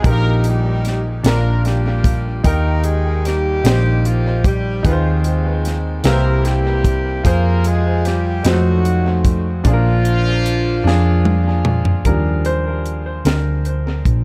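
A slow 6/8 gospel pulse at 50 beats per minute (counted in dotted quarters) moves with a straight, unhurried feel in Eb major, cut from a longer piece and carrying a reverent, hopeful mood. A tight funk drum kit, dry and acoustic with a high-tuned snare, a tight kick, hi-hat and toms, sets the groove beneath a dark, round, amped hollow-body short-scale electric bass that is picked and sits up front as the most prominent part. A clear, polished baby grand piano supplies present accompaniment through chords that move from Eb/Bb through Ab/Eb, C7, Fm and F7b9 before resting on Ebmaj7. Over this, a warm pop-style horn section plays the melody with tight octave doubling until 11.6 seconds, overlapping a drum fill that begins at 10.9 seconds. From 12.1 seconds the piano takes a solo. The mix is echo-heavy, with tape echo on the horns, piano and drums, and the room carries little reverb.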